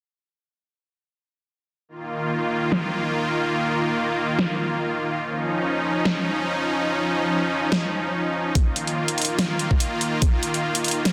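A dense, heavily limited modern master sits inside a wet plate reverb with a digital ambience, giving this short cut from a longer heavy wobble dubstep track a crowded, chaotic weight. At 144 BPM in 4/4 with a half-time feel and a 55% swing on the sixteenths, tuned to A4 = 438 Hz, a lush supersaw pad enters at 1.9 seconds. It is detuned and bright with a sub octave, a slow attack and a long release, and its sustained chords pump against the sidechain while moving from Ebsus2 to Dbadd9 and back to Ebsus2. The dubstep drum kit joins at 2.7 seconds with a huge snare and bright hi-hats, both low-pass filtered, in a small room and with a tape-tinged layered character. A filter sweep runs over the drums throughout. At 8.6 seconds a knocking electronic kick drum arrives up front, adding a heavy, produced punch to the heavy, chaotic mood.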